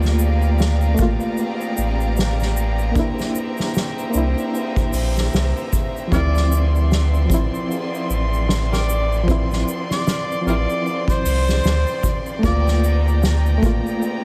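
A gritty, overdriven harmonica with tape echo takes the jazz-style melody from 6.1 s in this hypnotic, cinematic trip hop excerpt at 76 BPM in D minor, its scooped notes and tongue slaps sitting over a reedy electric piano with fast tremolo and tape echo, a biting, earthy chamber violin section holding sustained chords with vintage 12-bit sampler grit, a deep, round sub bass with tube saturation up front, a distant, roomy soft-mallet drum kit with a punchy kick and a swung 16th-note feel, and a bright, dry egg shaker in the background, all moving through Gm7, C7 and Dm9 in a small room.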